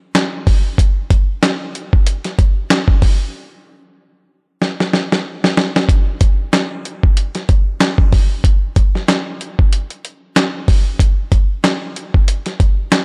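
A dusty, soul-flavored sampler-style drum kit of kick, snare, hi-hat and handclaps carries this warm, soulful hip hop excerpt at 94 BPM in 4/4, with a 16th-note swing. The kit sits up front and compressed, with a thumpy kick, a medium-tuned snare and the grit of a vintage 12-bit sampler, all in a light reverb. A break opens at 3.3 seconds, and a drum fill from 4.6 seconds leads into the second section at 5.9 seconds, where the groove runs on until 13.0 seconds.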